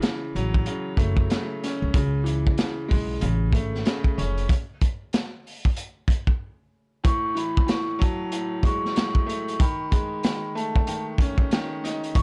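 A bright, woody upright piano and a crunchy, saturated breakbeat kit with a punchy kick open this tough, gritty boom-bap hip-hop excerpt at 94 BPM in F# minor, joined at 0.4 s by a growly, thumpy pizzicato upright bass that drops out for a break at 4.5 s, before a mellow, ringing soft-mallet vibraphone carries the melody from 7.1 s with plate reverb and tape echo as the harmony turns F# dorian over a dark, dry, swung groove.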